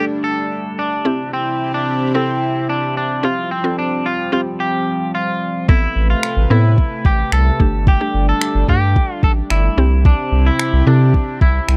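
A twangy, clean electric guitar carries the melody up front in this confident, energetic dance-pop excerpt at 110 BPM, over a woody mallet-like synth pluck and a shimmering, retro pulse-width pad, both pumping with sidechain, until a round, dark analog bass and a soft-kicked R&B kit with finger snaps enter at 5.7 seconds, all in a dry, close 1970s-style studio sound moving through chords from Gsus2 and C to Fsus2 and Amadd9.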